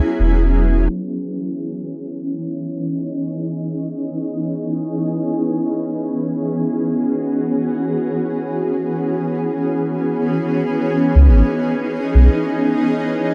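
A dreamy, reverb-soaked and softly filtered mix frames this hazy, spacious ambient dub excerpt, where a cloudy, evolving granular pad sustains blurred, full-bodied chords moving between F#9sus4 and C#m9 under a filter sweep from 0.9 to 10.1 seconds, while a deep, round, soft dub sub bass sits up front in two brief appearances, the second arriving at 11.2 seconds.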